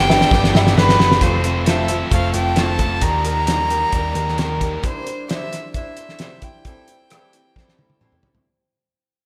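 Hopeful and open-road, this short folk rock and heartland rock excerpt moves at 132 BPM in a straight 4/4, with a reedy, nasal fiddle carrying the melody over a boxy picked archtop guitar, a biting double-tracked overdriven guitar riff, a round hollow-body bass and a cloth-damped, thuddy drum kit with a fat snare up front. A woody, slightly detuned upright piano adds a brief second line in the background until 1.1 seconds, while the electric guitar and bass drop out at 4.8 seconds as the chords move from G through F, Eb and Cadd9 to Am7. Slapback echo colours the fiddle, piano and guitars, and the fiddle also carries an analog delay, all set in a moderate recital hall reverb with a big arena sound as drum fills bookend the fade-out.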